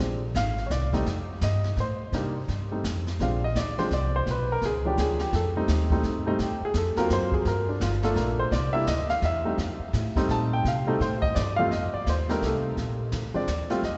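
Sophisticated and relaxed, this jazz piano trio excerpt swings in 3/4 at 169 BPM in F mixolydian, with an intimate, up-front baby grand piano taking a solo throughout, its short sustain and audible action noise giving the playing a close, natural feel. A woody, thumpy pizzicato upright bass anchors the low end, while a brushed drum kit with a medium-tuned snare and boomy kick enters at 0.3 seconds. The harmony moves through rich colours such as Bb9, F9, Bdim7 and a striking Gbmaj9#11, all bathed in a long church reverb that gives the mellow, softened recording a hall-like glow.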